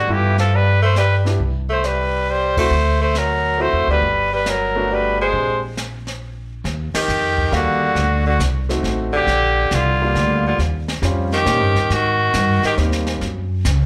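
A clear, vintage-toned trumpet with vibrato and slapback echo carries the melody up front over a punchy tenor saxophone second line, an intimate grand piano with audible action noise, a woody, thumpy pizzicato upright bass and brushed drums with dark cymbals and a boomy kick in this warm, swinging small-group jazz piece at 137 BPM in 3/4, moving from G major to Eb major at 6.7 s with band accents at 2.5 and 6.9 s, heard as a live club gig through the venue's PA with light reverb.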